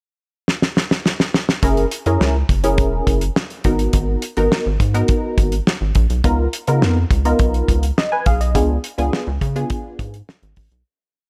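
Early-eighties boogie funk at 104 BPM in a funky, slick mood, opening with a drum fill from 0.5 seconds on a damped, dry 70s kit with a fat snare and tight kick, before a rubbery, hollow square-wave bass with slides and a punchy, detuned sawtooth polysynth with chorus enter at 1.6 seconds, the bass playing a fat syncopated boogie line and the synth pushing rootless chords with short fills over F#9, G#m9, C#13 and C#7b9, all in a small room, until a fade-out from 8.6 seconds.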